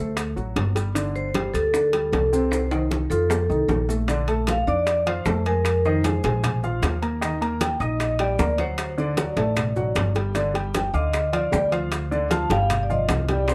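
A dark, intimate baby grand piano, with its action noise audible, and a woody, thumpy pizzicato upright bass sit up front beneath a metallic, vintage-sounding vibraphone melody with slow motor vibrato, opening a sultry, sophisticated Afro-Cuban jazz excerpt in G minor at 153 BPM. At 0.2 seconds the percussion enters: ringing metal-shell timbales, with tight, high-tuned bongos, medium-tuned congas and grainy maracas set further back. A drum fill from 2.5 to 4.1 seconds leads into a longer second section whose chords move through Bbmaj7 and Ebmaj7 before settling on Ebmaj13/G, all in a small room with light reverb.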